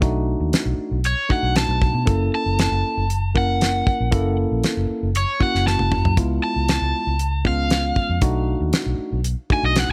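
Straight-eighth soul blues at 117 BPM in 4/4, this short cut from a longer piece has a swaggering, gritty mood, tuned slightly sharp at A4 = 441 Hz. A damped 70s drum kit sits up front with a fat snare, a tight kick, a mid-forward tone and a rolled-off top, and it drops in a fill at 5.7 seconds. A vintage muted fingered electric bass, round, dark and foam-muted, holds down the low end alongside a clean tine electric piano played through a combo amp for accompaniment. From 1.1 seconds a cranked stack guitar takes the melody, bright, picked and overdriven, ringing high in its register. The harmony moves through B7#9, F#7#9 and C#7#9 before returning to B7#9, and the dry sound carries little reverb.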